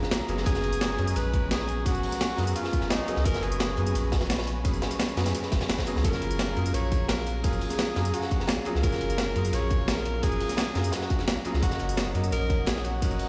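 Heard through a big sound system in a bare stone room, this lush, uplifting liquid drum and bass excerpt layers a gritty, pitched-up sampler-style breakbeat kit and a crunchy, saturated acoustic breakbeat kit with dark, filtered cymbals under a punchy, layered electronic kick. A deep, round sine sub bass sits up front with tube saturation, while a clear concert grand piano with delay plays accompaniment and a soft, breathy, chorused pad holds mellow chords in the background. A present tenor saxophone carries the jazz-style solo melody with vibrato and subtone from 0.5 seconds, over harmony moving from G#m11/F# to F#maj9 at 6.0 seconds and D#m7/F# at 11.6 seconds.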